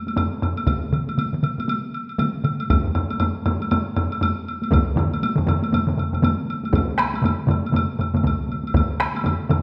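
Japanese traditional taiko drum ensemble music in a powerful, ceremonial mood, cut from a longer piece and moving at 119 BPM in 4/4 with a swung sixteenth-note feel. Several taiko ensemble parts played with hard sticks fill the texture, one sounding in a live room and another captured close, while a further ensemble part struck with heavy sticks adds weight from 0.7 seconds. A solo taiko drum sits up front with a vintage, band-limited character, and a woody woodblock heard in a small room ticks along beneath the drums. The recital hall reverb is wet, giving the hits a resonant, ringing tail. After an opening section, the music shifts into a new section at 6.7 seconds, and the heavy-stick ensemble part stops at 8.9 seconds.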